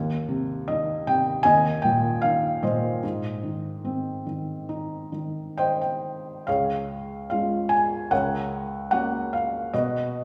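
A wet scoring-stage reverb with a 1.4-second decay surrounds this short passage, and the sound suggests a church or concert hall with small room ambience. At its centre is a felt-muted upright piano, placed up front, soft, mellow and intimate, with the mechanical noise of its action audible. It is a classical, lyrical solo piece in 4/4, played with rubato between 64 and 79 BPM, and the mood is tender and warm. The piano spans from Db2 to Ab5, beginning in Ab major before a brief fill at 5.1 seconds leads into a new section in Db major at 6.5 seconds. From there the harmony moves through Gb over Db and on to Cb as the passage, cut from a longer piece, runs to 10.2 seconds.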